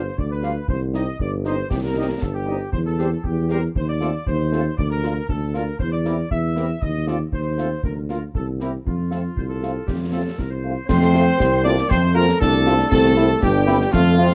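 In a straight 2/4 at 118 BPM, this festive, rousing military-style march for wind band in F major opens with a trumpet section carrying the melody over an up-front tuba bass, joined within the first second by concert bass drum, snare and dark clash cymbals, a background woodwind second line and a mellow, vintage-toned French horn accompaniment. At 10.9 seconds the texture fills out as a clear euphonium and a pure, expressive piccolo with vibrato add second lines while a trombone section holds sustained chords, the harmony moving through a C7 near 12.9 seconds. The sound is close and detailed with little reverb, though the trumpets, woodwinds and tuba carry a distant, roomy quality in this fragment cut from a longer piece.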